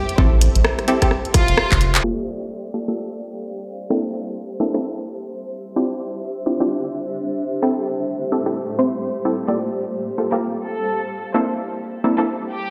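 UK garage in a two-step vein, skippy and late-night, moving at 129 BPM with a swung sixteenth feel in G dorian. Punchy, detuned sawtooth chord stabs with chorus and digital delay run to 12.3 seconds over a cloudy, evolving granular pad that pumps to the sidechain, while a tight electronic kick, an up-front garage kit of handclaps, hi-hat and rim click, and a thick, saturated sub bass drive only the opening 2.0 seconds, closing on a drum fill and band accent. A filter sweep then works on the stabs as the beat drops out, and a smooth, clear studio violin section with vibrato and dub echo returns at 9.5 seconds, all heard through a bare stone room on a big sound system with plate reverb.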